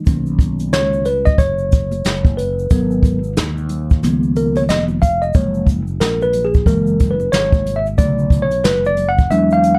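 A dark, warm studio sound with moderate reverb frames this cool, mellow jazz-hop excerpt at 91 BPM with swung 16ths, where a worn, slightly out-of-tune tine electric piano plays solo up front over Bmaj9, G#m9, C#13, F#maj7, F#7 and Bm7 chords, a growly fretless electric bass with analog chorus holds the low end, an up-front brush kit with a punchy kick and medium-tuned snare keeps time, and a very quiet, band-limited egg shaker and congas sit in the background.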